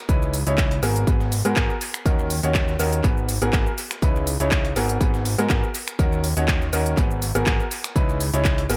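A digital, echo-heavy mix opens this short, bittersweet and soulful piano house excerpt, moving at 122 BPM in 4/4 with a light swing on the sixteenths and set in G# minor. A clear, woody upright piano sits up front with its riff, roughened by vintage 12-bit sampler grit, pumping against the kick and trailed by dub echo. Beneath it, a fat analog bass of detuned sawtooth and square waves holds a thick low end with a fast attack and sustained notes, a filter sweep and moving notch shaping its tone as it pumps in the same way. A punchy electronic kick drives the groove from the front until 8.6 seconds, joined by a house kit of finger snaps, handclaps, crisp hats and shaker in a small room with dub echo. Far back, a very quiet breakbeat sampler-style kit adds gritty, overdriven hi-hat, medium-tuned snare and tambourine, while the chords cycle through C#m9, G#m9 and D#m7.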